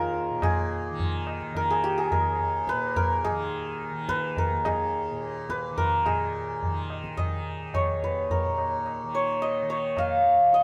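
Hindustani classical music in a meditative, radiant mood, set in a five-beat cycle and cut from a longer performance, with the players heard live together in a stone room that adds a moderate reverb. A bright, hammered santur carries the melody up front with a shimmering ring, while a softly plucked tanpura sustains a warm, buzzing drone beneath it and a low-tuned tabla sounds close and resonant, entering at 0.1 seconds. The music moves into a new section at 6.1 seconds.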